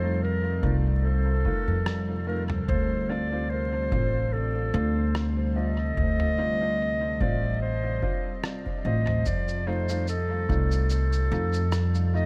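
A soft-attack clarinet carries the melody up front with a gritty vintage sampler edge and dub echo, over a woody pizzicato upright bass that sits prominently with tube saturation in this peaceful, spacious ambient dub excerpt at 73 BPM in F mixolydian. A pure, detuned organ-like pad with chorus and a slow attack holds sustained chords in the background, while an intimate upright piano with audible action noise adds filtered, echoing stabs across the F7 and Dm7 harmony. A deep analog kick enters at 0.6 seconds and a muffled, pitched-down sampler kit of cabasa, rim click and toms joins at 1.9 seconds, all beneath a gentle 16th-note swing, roomy reverb and a bed of vinyl crackle.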